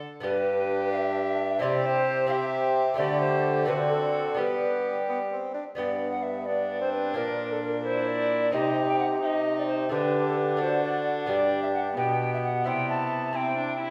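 A classical, renaissance-style consort dance in G major, this courtly, stately passage moves at 87 BPM in a straight 6/8, cut from a longer piece. A mellow, hollow alto recorder carries the melody from 0.2 seconds, its woody, pure tone tongued with a chiff, vibrato and rolled-off highs, and it sits most forward in the blend. Beneath it, two clear bassoons in classical style fill out the harmony, one in an accompanying middle line and the other holding the bass, while a viola with gut-string warmth, light vibrato and a slightly reedy bowed tone adds a second line from 0.3 seconds. A bright, delicate fingerpicked lute with double strings, some doubled at the octave, opens the passage at 0.0 seconds and sits quietly in the background as accompaniment. The harmony settles through G, C and a suspended D7 before the second section at 5.8 seconds shifts to darker colours with Bb and Cm, then returns through D to G and C. 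The whole ensemble rings in a reverberant recital hall with the spacious, resonant air of a church or concert hall.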